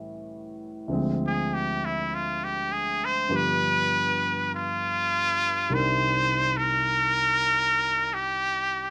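A trumpet with a straight mute carries the melody in this smoky, melancholic slow jazz excerpt, entering at 1.3 s with a nasal, brilliant tone, vibrato and scooped notes, sitting present and up front. A dark, mellow grand piano plays accompaniment from the start, its smooth, vintage sound ringing with long sustain beneath the horn as the swung harmony moves through A7, Dm7b5 and G7 before settling on Cm9 at 5.7 s. A moderate club reverb surrounds the performance, tuned to A4 = 435 Hz.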